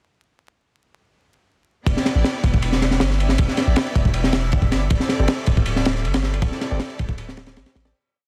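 This is a short, complete drum and bass piece in a jungle vein, running at 158 BPM in E minor with a raw, nostalgic mood. At 1.9 seconds the drop arrives all at once: a crunchy, heavily chopped breakbeat kit with a punchy kick, high-tuned snare and dark ride cymbal sits up front with a saturated, gritty character and a rolled-off top. Beneath it a deep, sine-like 808-style bass carries a dub-style line with a fast attack and long decaying notes, while a lush symphonic string section holds bowed chords with vibrato and syncopated pushes, moving one shape in parallel from Em7 to D7sus4. A glassy texture of drifting overtones enters at 2.9 seconds, sustaining a high note with chorus and its own reverb far in the background, and at 5.2 seconds a background grand piano adds sparse echoing stabs roughened by vintage 12-bit sampler grit and dub echo. The piece sits in a small room ambience under a dense, heavily limited modern master with vinyl crackle, and a fade-out begins at 5.9 seconds.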